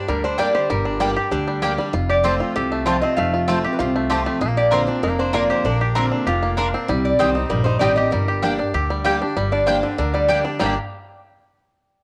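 A straight, driving 4/4 pulse at 194 BPM propels this haunting G minor bluegrass passage, cut from a longer piece, as an up-front, twangy fingerpicked banjo and a nasal, metallic slide resonator guitar share the melody over a bright, full-bodied picked dreadnought guitar with a cassette-tape tint, a dark, woody pizzicato upright bass, and double-string mandolin stabs that enter at 0.4 s with their own tape colour, moving through Gm, F, Bbadd9 and Cm in moderate spring reverb on a homespun cassette recording.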